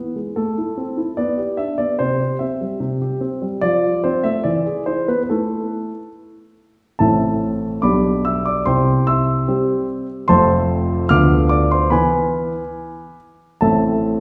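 Set in 2/4 at 73 BPM, this short classical-period sonatina moves with a flexible rubato that gives its A minor phrases a serious, elegant bearing. A solo grand piano carries the whole piece, its tone warm and placed up front, ranging from F1 up to F6. The harmony opens on Am, G/B and C before turning through F to an E7 and settling on A5. At 7.0 seconds a second section begins, restating Am, G/B and C, then passing through F and Bdim/D to E before closing on Am at 13.6 seconds. A wet recital-hall reverb with a 1.6-second decay surrounds the piano, and the listener seems placed further back in the room, so the performance carries a roomy, resonant sense of space. The recording is a brief cut from a longer work, ending at 14.2 seconds.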